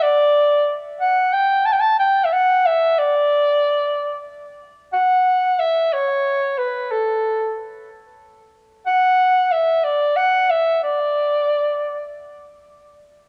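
Folk excerpt in a hopeful, straight 6/8 feel, where a lone dark soprano saxophone carries the melody up front in a classical style, its light vibrato and vintage cassette-tape grain set with analog delay and a moderate spring reverb in a small, homely room, playing from the opening until 12.1 seconds as the piece moves into a new section at 4.9 seconds.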